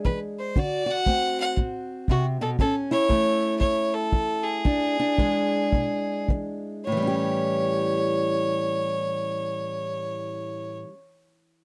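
Laid-back and gritty, this short acoustic country blues excerpt swings in 4/4 at 103-119 BPM in A mixolydian, with a clear, biting fiddle carrying the melody up front with light vibrato and an airy bow over a bright, boxy fingerpicked parlour guitar with audible finger squeak, while a punchy brushed kick drum plays until 6.4 s through a dry, close 1970s-style studio sound that slows down from 2.6 to 6.9 s before moving to a second section.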